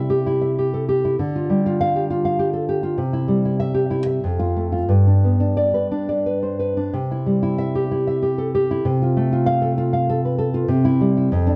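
Tender and warm, this short romantic excerpt for solo classical guitar is cut from a longer piece and moves in a three-beat metre with a free, rubato feel. The nylon-string guitar plays alone from 0.0 to 11.6 seconds, spanning a range from F2 up to F5. Its tone is acoustic and dark, thumb-plucked in a classical manner, and it sits up front in the mix. The harmony settles into a simple, lyrical progression that moves through a handful of chords before coming home. A moderate recital-hall reverb gives the instrument a soft sense of space, while the mellow production keeps the top end rounded and subdued.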